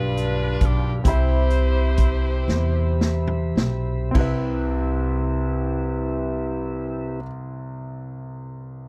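A slow, hopeful and reverent gospel passage in 6/8 and C major opens with a bright, punchy saxophone section carrying the melody with vibrato and tape echo, over a clear grand piano with audible action noise, a soft, flute-like tonewheel organ through a slow rotary speaker, and a woody pizzicato upright bass sitting up front. A big-band drum kit with a boomy kick enters at 0.2 seconds as the tempo slows, playing a fill from 2.5 seconds before dropping out at 4.4 seconds. The saxophones stop at 3.0 seconds, leaving the piano ringing alone after bass and organ end at 7.2 seconds, all in a dry, close 1970s-style studio sound cut from a longer piece.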